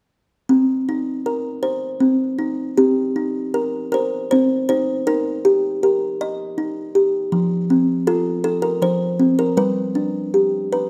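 Close, detailed microphones and a light reverb give this short excerpt of children's music an intimate, up-front sound. A lone kalimba carries the melody, its woody, hollow-box tone plucked with the fingertip and kept soft and mellow. The mood is wistful and dreamy, set in C minor at a relaxed 79 BPM in 3/4, with a rubato feel that lets the time breathe. The harmony moves from Cm7 through Eb and F before reaching G near 9.6 seconds. The kalimba plays from 0.5 to 10.9 seconds, and a new section begins around 2.8 seconds.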